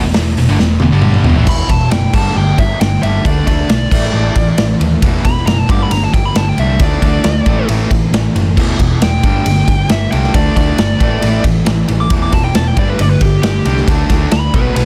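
Heavy and menacing, this hard rock excerpt in E minor pounds along at 136 BPM in a straight 4/4, opening with a crunchy overdriven guitar, a sludgy distorted guitar and a brief double-tracked high-gain guitar riff over a round, punchy hollow-body bass while a raw garage drum kit rolls through a fill from 0.6 to 1.5 seconds. At 1.5 seconds the high-gain guitar drops out and a dark, smooth lead guitar with overdrive and tape echo takes a solo over a repeating E5, G5, D5, A5 power-chord cycle, with the crunchy and sludgy riff guitars sitting in the background. The saturated, gritty drums sit up front in a bright stone room with a pumping ambience and a punchy kick, and the whole mix is dense and heavily limited, with little reverb.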